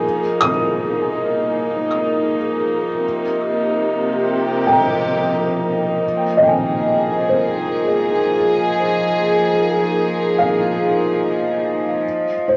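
A string section fades in from the opening moment, its sustained chords carrying a reedy, gut-string tone with light vibrato and a period-style, up-front ensemble sound, while a felt-muted upright piano and a glass harmonica sound alongside it. This short ambient piece, cut from a longer work, moves in an unhurried triple metre with a straight feel and a spacious, melancholic mood. High above the strings, the piano plays soft arpeggios in a boxy, intimate, thick-felt voice, dark and mellow, trailed by tape echo. The glass harmonica holds a single pure, ethereal tone with a slow attack, adding a smooth, glassy texture. The harmony drifts through suspended and minor-seventh colours, moving from Bb7sus4 to Csus4 and Fm7 before settling on a rootless Bbsus4 at 12.0 seconds. Plate reverb and cassette tape colour all three parts, and the home recording sits in a wet, booth-like space.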